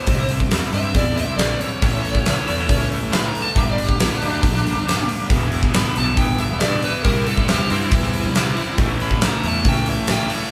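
Brooding and angsty, this short cut from a longer quiet-loud alternative rock piece moves in a straight 4/4 as a band playing live in one room, wrapped in a moderate studio reverb. A dark, smooth overdriven lead guitar carries the melody as a solo throughout, sitting over a chord cycle that runs from C through A, G minor and E minor. Behind it, a bright, clean, twangy electric guitar picks compressed arpeggios through a tremolo, while a compressed fuzz guitar grinds out a riff in the background. A growly, fuzz-laden picked bass with overdrive anchors the low end, and a huge arena drum kit sits up front with a fat snare, punchy kick and hi-hat in a big room. At 5.3 seconds a cranked stack guitar joins with its own bright, overdriven riff, colored by a phaser, thickening the wall of guitars toward the close.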